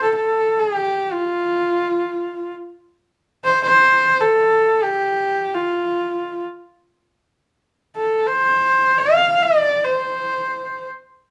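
A lone bowed horsehead fiddle opens this Mongolian folk passage, its husky, earthy horsehair tone set up front and shaded with light vibrato and sliding portamento. Unmeasured and in free time, the single player's line carries a vast, proud mood until the fiddle falls silent at 10.9 seconds, with the clip itself cut from a longer piece. A wet, large-studio reverb surrounds the fiddle, lending the live performance a sense of open space.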